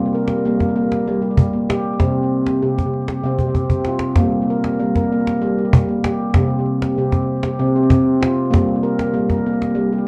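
Meditative and gentle, this world piece builds on tuned percussion in a straight 7/8 pulse. A handpan carries the music with ringing arpeggios across its range from C3 to Bb4, its stainless steel tone bright and up front, with sharp finger strokes and a trail of tape echo and plate reverb. A close, acoustic cajon sits equally forward, snappy with its snares and played with hard hands, and it breaks into a short drum fill from 3.4 to 4.2 seconds. The harmony rocks between G minor and a C5 chord every couple of seconds. The whole track is set in a small, reverberant room and has the worn character of old cassette tape, with a warbly drift in pitch, and it is cut from a longer piece.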